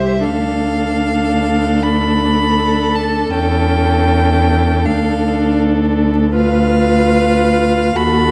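The recording has a dark, warm character, with vinyl crackle beneath the strings and a moderate scoring-stage reverb that gives the ensemble a sense of space. This is a tender, slow romantic movement for string quartet with a rubato feel, heard as a short cut of about 8.3 seconds from a longer piece. A rich first violin carries the melody in its upper register with vibrato, while the second violin plays a supporting line that sounds more distant, shaped with expressive portamento. The viola fills in the accompaniment with a warm, even tone, and the cello sits up front on the bass, focused and smooth. All four players are bowed with vibrato, and they sound together from the opening second to the close.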